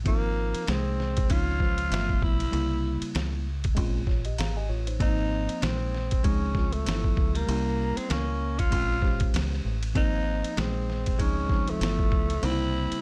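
Cool and warm, this swung jazz-hop snippet sets a breathy, raspy tenor saxophone melody with scooped notes and a growling edge over a worn, slightly out-of-tune tine electric piano that adds a brief fill at 4.1 seconds, a dark, round fingered electric bass, a clean hollow-body semi-hollow electric guitar tucked in the background, and a muffled, compressed sampler-style drum kit with a thumpy kick sitting up front, all in a lightly reverberant space.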